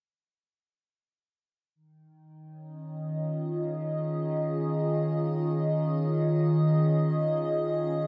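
A lush, wet hall reverb wraps this soft-topped ambient excerpt, which floats in free time with a warm, peaceful mood. An evolving wavetable pad sits up front from 2.8 s to 8.1 s, holding sustained chords built on an Eb7sus4 harmony that spans Eb3 to Eb5. Its morphing, triangle-based unison tone swells in slowly and fades with a long release, coloured by chorus, phaser and its own built-in reverb.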